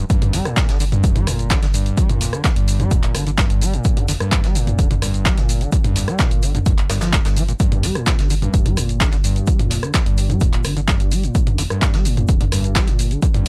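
Hypnotic and trippy, this acid house excerpt runs at 128 BPM in G minor, with a squelchy, resonant sawtooth acid bass riff carrying distortion, analog chorus, tape echo and a filter sweep, while a round, deep analog bass sits in the background beneath it, both pumping against the kick. An up-front, punchy electronic kick and an analog drum machine of handclaps, hi-hat, rim click, shaker and toms drive the straight 4/4 groove, with a very quiet brushed snare and shaker, muffled in a small room, tucked underneath. The sound is dry and gritty, like a hardware recording, and a G5 chord is heard at 0.0 s.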